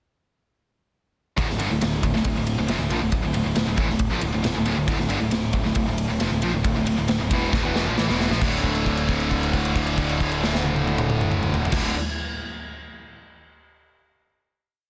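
A driving, menacing hard rock piece kicks in at 1.4 seconds with a big rock drum kit up front, its punchy kick, medium-tuned snare and bright cymbals sounding in a big room, while a dark, round, fuzz-toned electric bass drives eighth notes that double the guitar riff. Behind them, three picked guitars stack the power-chord riff: a high-gain one with distortion, a warm overdriven one treated with spring reverb, and a tight, double-tracked distorted one. After a drum fill from 7.5 seconds, the band lands on a final chord at 8.4 seconds and holds it, all within a dense, heavily limited modern master with light reverb.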